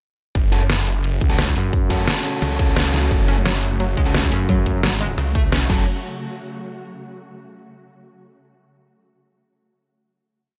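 This is dark, aggressive technical drum and bass at 174 BPM in 4/4 with a straight feel, sitting on F# minor. The track drops in at 0.4 seconds with a punchy, layered electronic kick and a tight, up-front kit of deep snare, closed hat and crash, both re-recorded in a large room. Beneath them a snarling, detuned saw bass with tube saturation and a moving notch pumps against the kick in chopped phrases, while a thick FM bass growls in from 1.2 seconds, answering the first. Sparse, overdriven guitar stabs move one chord shape in parallel through dub echo, and a swarming, granular drone holds tense, evolving chords in the background with its own reverb. From 3.3 seconds a round, bright analog pluck adds a six-step arpeggio loop that drifts against the bar, colored by chorus, ring modulation and a filter sweep, before everything gives way to a final hit at 5.9 seconds.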